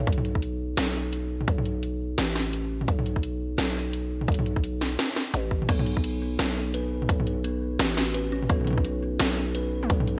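Dark and spacious, this half-time drum and bass excerpt moves at 171 BPM in 4/4 with a swung sixteenth feel, built on a growling, buzzy 808-style bass with a fast attack and a decaying tail. Up front, an overdriven drum kit with a cracking snare, bright hats, crash cymbal and toms, treated with gated reverb, plays alongside a tight, overdriven electronic kick. At 5.7 seconds a woody, ringing kalimba enters with delayed arpeggios, all set in light digital ambience with a bright 1980s-style sheen.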